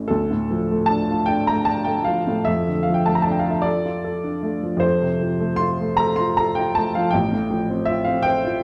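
Wistful and yearning, this short romantic nocturne for solo piano moves in a gentle 6/8 with uneven, rubato beats that let the phrases breathe freely. A single upright piano carries everything, its tone woody and slightly detuned, with a smooth, vintage character that sits up front in the mix. The playing spans from A1 deep in the bass up to C6, giving the line both a grounded low register and a singing upper reach. The harmony drifts from D minor through its first inversion toward F major, settling on F over A by about 7.1 seconds. A moderate scoring-stage reverb and dark production wrap the instrument in a soft halo, and the passage is cut from a longer piece.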